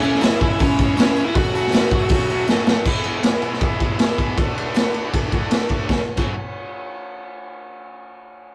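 Swaggering and menacing, this garage rock excerpt rides on a raw, gritty drum kit with a punchy kick, dark cymbals and a medium-tuned snare sitting up front in a small, pumping room, while a bright, double-tracked overdriven guitar picks out the riff. A dark, overdriven slide guitar carries the melody only until 2.4 s, just before a drum fill at 2.5 s, as a very quiet, buzzy combo organ holds sustained chords and a jingly vintage tambourine sits low in the mix. The rough rehearsal-room sound adds saturation and a short reverb as the chords move from C#m and F#m through E and D.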